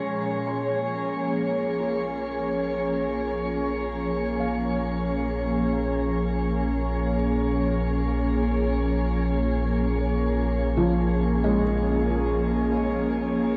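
Ambient and reflective, this spacious fragment from a longer piece sets an ethereal, glassy FM pad of sustained chords up front with ensemble chorus. Beneath it, a soft, felt-muted upright piano with audible action noise and delay fades in on arpeggios, and a round, dark analog bass holding a deep Bb1 fades in alongside. The mix is bathed in a long shimmer reverb and the warbling pitch drift of worn cassette tape.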